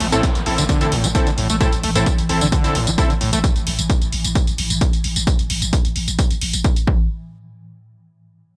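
A bright, 1980s-style digital sheen with light reverb frames this short cut from a driving, intense peak-time techno track in straight four. A punchy, layered electronic kick sits up front, carrying a small-room character, while tape-tinged electronic hi-hat and tambourine pump against it. A squelchy, screaming acid line of resonant sawtooth rasps through distortion, chorus and delay for the first 3.4 seconds, joined by a detuned supersaw stab that cuts bright and sustained with its own echoes. Underneath, a growling, buzzy 808-style bass holds a single low note through overdrive and a low-pass filter. From 1.1 seconds a swarming, tense drone with a slow attack and granular shimmer drifts in the background, and a very quiet downlifter trails beneath the opening bars.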